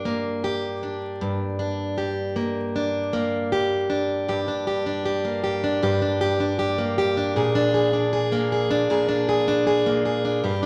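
A vinyl crackle sits under a wet, spacious studio reverb in this short 10.7-second pop fragment, heartbroken and longing at a slow 78 BPM in straight 4/4. A single picked, plugged-in steel-string acoustic guitar carries it alone, up front and warm, with audible finger squeak as it ranges from G2 to Ab4. The playing rests on G minor before moving to Bb7 at 7.4 seconds, with a new section opening at 4.3 seconds.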